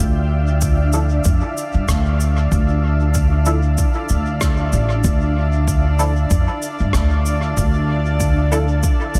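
A blurred, detuned granular cloud pad with built-in reverb, a woody, thumpy pizzicato upright bass up front and a faint, glassy chorused harmonics texture drifting in the background open this spacious, meditative ambient dub excerpt in D minor at 95 BPM, resting on a Dmadd9 chord; a deep, tape-warm electronic kick and big-room cabasa and rim click with dub echo enter at 0.6 seconds, followed at 0.9 seconds by a muted, mellow filtered sawtooth chord stab carrying ensemble chorus and dub echo, all within light studio ambience and a gentle 16th-note swing.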